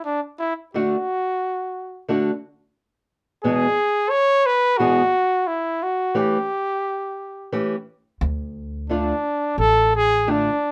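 A steady, straight 4/4 pulse carries this short cut from a longer mariachi piece, a piece of Mexican folk music that feels both romantic and festive. A warm trumpet sings the melody from the very start in a classical style, with a soft attack and light vibrato, standing up front as the solo voice. A fingerpicked nylon-string guitar joins at 0.7 seconds, its small, dusky acoustic tone sitting up front alongside the trumpet as accompaniment. The harmony moves from D to E, then to A7/E, before darkening onto D minor at 8.2 seconds, where a woody, thumpy upright bass enters with gut-string pizzicato, low in the mix. A moderate small-room reverb keeps the sound intimate.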